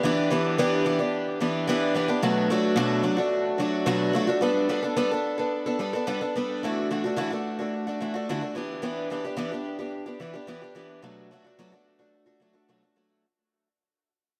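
A lone picked twelve-string acoustic guitar opens this rock excerpt, its bright, shimmering, octave-doubled strings sounding fresh and sitting up front in the mix. The playing moves at 109 BPM in a straight 4/4, tuned slightly high to A4 = 441 Hz, and ranges from B2 to A4. Its small parlour body lends a boxy edge, while a dub echo on the guitar gives the sound a repeating, spacious trail over light reverb. The chords move through Em7 and Bm7, then shift at 4.4 seconds to Gadd9 and Dadd9 before returning to Em7 and Bm7, with a warm, open-road mood throughout. From 4.4 seconds the guitar fades out across the rest of this 13.2-second excerpt, cut from a longer piece.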